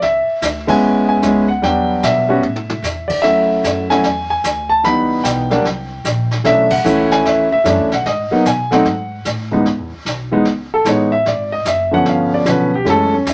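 A swung 4/4 groove at 150 BPM carries this smoky, late-night jazz piano trio fragment, cut from a longer piece. Brushes on a vintage kit set the pulse with a dark, rolled-off cymbal sound, a medium-tuned snare and a punchy kick, and a short drum fill slips into the early bars. The pizzicato upright bass sits low and woody, its steel strings giving it a bright edge beneath the other two parts. Up front, the grand piano carries the melody with an intimate, natural tone, and you can hear the click of its action. The trio hits band accents at 0.6 and 6.7 seconds while moving through colourful extended chords, and at 9.7 seconds the music settles into C# minor as the piano takes a solo to the close. A moderate studio reverb gives the trio a snug, small-room sense of space.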